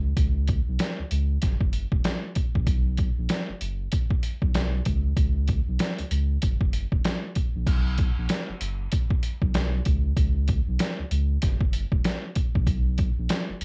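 A swung 4/4 groove at 96 BPM, with 62% swing on the sixteenths, drives this confident boom-bap hip-hop cut, taken from a longer piece and tuned to A4 = 445 Hz. A sampler-style trip hop drum kit enters at 0.2 s and sits up front, pitched down and compressed, its gritty, tape-coloured character sounding as though it was re-recorded in a small room. The thumpy kick and medium-tuned snare carry the beat, while hi-hat and crash cymbal add top-end detail. Underneath, a soft dub sub bass holds the low end from the very start, deep and round, with a triangle and square-wave tone, a fast attack and long sustain, moving between E1 and C#2. The cassette home recording is dry and intimate, and a new section begins at 7.7 s, with both parts continuing to the end of the clip.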